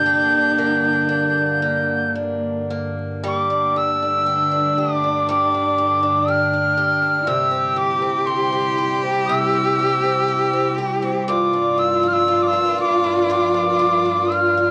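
Celtic slow air, mournful and haunting, in a rubato 4/4 where an up-front wooden whistle with chiff and vibrato carries the melody over a nasal, bowed cello second line with portamento, a boxy picked archtop guitar accompaniment and a glassy, ethereal FM pad with ensemble chorus, moving from Gm through Gsus2 and C to Gm7 in this cassette-recorded home recording with vinyl crackle and a wet studio reverb.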